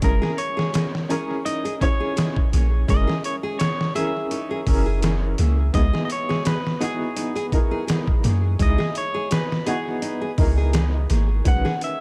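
A deep, round 808-style bass sits up front with tube saturation beneath a gritty, pitched-down sampler-style drum kit, whose thumpy kick, snare and hi-hat carry tape echo and the sound of a large room, setting a dark, cinematic trip hop mood with a light 16th-note swing. Over them a clean, picked electric guitar carries the melody through dub echo. A woody upright piano with tremolo and tape echo and a fingerpicked nylon-string guitar with audible finger squeaks supply chords and arpeggios that move from F#7 to C#m7 and reach Badd9 at 11.5 seconds, while light reverb, digital ambience and a faint mains hum lend this cut from a longer piece an echo-heavy haze.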